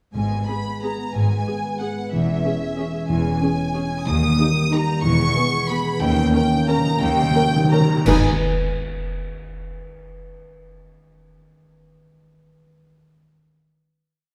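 Sweeping and bittersweet, this short orchestral ballroom waltz in G# minor moves in a rubato 3/4 at roughly 164-198 BPM, set in a wet recital hall with a dark production. A chamber violin section carries the melody with a soft, intimate sul tasto tone and light vibrato, while a lush symphonic violin section doubles the tune in unison and at the octave with a focused, smooth top. Woody violas supply after-beat and sustained chords, a rich cello section sits in the background with bass on the beats, and dark double basses double the bass line. A mellow French horn section holds background chords, and a concert harp rings out thumb-plucked, rocking broken chords throughout. Very quiet timpani on calf heads strike single bass notes at the opening and return at 4.1 seconds, rolling into a fill from 6.0 seconds as cymbal swells, crashes and bass drum strokes build toward an accent at 8.1 seconds and a closing G# minor chord.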